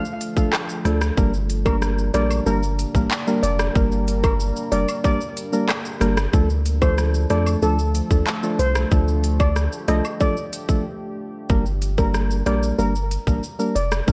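A punchy sub bass anchors this hypnotic, tough dancehall excerpt, entering at 0.9 s with a deep, sine-based tone, a pitch-drop attack and sustained notes placed up front. It sits in G minor at 93 BPM in a straight 4/4, tuned to A4 = 436 Hz, with the harmony moving between Dm and Gm. The electronic island pop drum kit is also up front, with a tight kick, smooth hi-hats, handclaps, rim clicks and shaker, all given an overdriven edge and re-recorded in a large room. A hollow, organ-like percussive stab with a noise layer and chorus plays the accompaniment and pumps with sidechain compression. Above it, a shimmering steel pan carries the melody, struck with medium rubber sticks in a boxy small room and trailed by delay. In the background, a moody, evolving pad of detuned sawtooth and sub-octave sine with chorus and built-in reverb holds the chords, while a vintage, band-limited layer of cabasa and woodblock with maracas and a group handclap adds texture. 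After a brief break at 10.9 s, the pad drops out at 11.5 s as the chords return to Gm.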